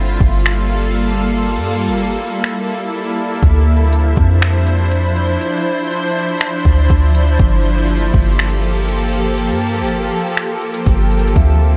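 Atmospheric cloud-rap in a half-time hip hop feel, this spacious, melancholic passage is cut from a longer piece. A shimmering ambient pad carries sustained chords up front, its detuned, ethereal tone bright with an octave-up sparkle, chorus, built-in reverb and sidechain pumping. Beneath it, a soft 808-style bass sits deep and round, its dark notes decaying after a fast attack. A smooth R&B drum kit enters at 0.2 seconds with finger snaps, crisp hi-hats and a soft kick, all given an overdriven edge. The chords move from Gm9 to Dm9 at 3.4 seconds and back to Gm9, and at 11.4 seconds a mellow tine electric piano appears faintly in the background, clean and heard through built-in speakers, as light digital ambience frames the whole.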